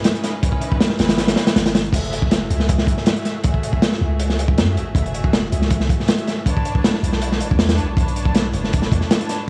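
A crunchy, saturated breakbeat drum kit with dark cymbals and a tight kick sits up front in this raw, dark drum and bass cut at 159 BPM in F# minor, while a bright, biting symphonic string section holds lush bowed chords moving from C#m9 through F#m9 to Bm9 and a deep, mellow 808-style sine bass sustains from 1.0 to 9.0 seconds, all set in a dry, gritty room with vinyl crackle.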